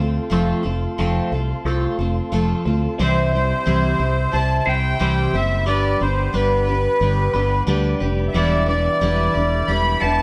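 Reflective and wistful, this folk rock and heartland rock excerpt moves at a straight 90 BPM in 4/4, with a shimmering, octave-doubled twelve-string acoustic guitar and a direct, amped fingered bass up front, while a slightly broken-up, twangy electric guitar through a small old amp plays a lo-fi riff with phaser and a very quiet, flute-like tonewheel organ holds sustained chords through a fast rotary speaker. At 3.0 seconds a reedy, sweet accordion with light tremolo tuning enters up front on the melody as the chords move from F to C, then on through G to Em7. The band plays live in one room with moderate studio reverb.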